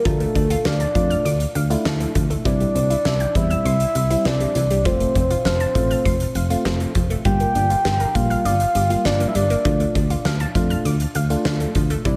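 Upbeat yet wistful, this synth-pop passage moves at 100 BPM in a straight 4/4, cut from a longer piece and running about 12 seconds over a Dm, C, F, Gm7 progression that returns to Dm. A soft, octave-layered synth lead carries the melody between A4 and G5, its full, dark tone given a sub octave, vibrato and a sustained body, with chorus and dub echo trailing behind it. Beneath it, a glassy FM electric piano with a bell-like attack and a warbling, vintage character supplies the accompaniment, while an analog pluck spins arpeggios across a broad span from E3 to F6, its bright, detuned sawtooth-and-square sound animated by a filter sweep and a moving notch. Both of these parts share the chorus and dub echo of the lead. A solid FM bass, punchy and round with a mellow decay, sits at the front of the low end, alongside a huge arena drum kit whose big-room acoustic sound pairs a fat snare with a punchy kick and hi-hat. 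A moderate spring reverb and an echo-heavy mix give the whole passage a spacious, trailing sheen.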